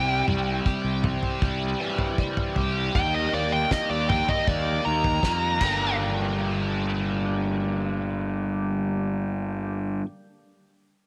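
Dark and hypnotic, this short fragment of psychedelic rock moves at 79 BPM in a straight 4/4, in G minor, tuned slightly flat to A4 = 438 Hz. A fuzz lead guitar carries the melody up front with a shadowy, picked tone, its solo soaked in distortion and tape echo until 6.0 s. Beneath it, a biting, double-tracked overdriven guitar plays a bright riff through a rotary speaker, while a fuzz fingered bass sits punchy and forward. The damped 70s drum kit sounds dry, with a fat snare, tight kick and dusky cymbals, and closes with a fill from 5.6 s. Further back, a percussive tonewheel organ holds full, clean sustained chords through a slow rotary speaker with audible key click, as the harmony moves from C to Eb and settles on Gm in light reverb and studio ambience.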